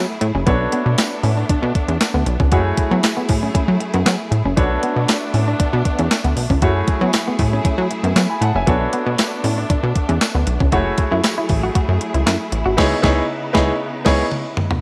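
Early-eighties boogie funk at 117 BPM, funky and danceable, built on a punchy, plucky analog bass and a thumpy, overdriven 8-bit drum machine up front, with a brilliant concert grand piano and lush bowed strings with vibrato, plus a clean, chorus-washed electric guitar riff and a jingly tambourine in the background, all in light reverb as Bm9 and F#m9 alternate until a band accent on C#m9 at 12.8 seconds and a drum fill at 14.3 seconds close this excerpt.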